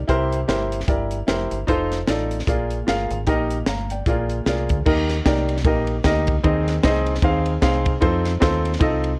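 A swung eighth-note feel at 151 BPM in 4/4 drives this short, uptempo gospel clip in Eb major, hopeful and soulful in mood. A crisp acoustic fusion kit sits up front, its punchy kick, high-tuned snare, hi-hat, ride and crash captured with an airy, polished studio sound. Underneath, a deep fingered electric bass gives a dark, round tone, direct and amped, moving between F1 and F2. A clear grand piano with a smooth, vintage character and short sustain carries the accompaniment up front, stepping through C7, F7 and Bb7 toward Eb before the second section at 4.9 s moves through Eb, Ab and F7. The mix is wrapped in light reverb and small room ambience, with the worn, warbling pitch drift of old cassette tape.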